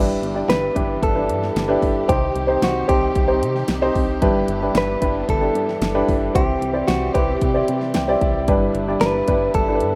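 With light reverb and a rough home-demo mix, this anthemic, uplifting piano-driven pop passage at 113 BPM in G major is carried by an up-front, woody upright piano with audible action noise, a lush bowed string section in the background, a dark, chorused synth bass, a punchy electronic drum kit with a fat snare, and a bright, clean, picked electric guitar melody entering at 0.5 seconds, before the piano adds a fill at 7.7 seconds as the chords move between G6, Cm and C.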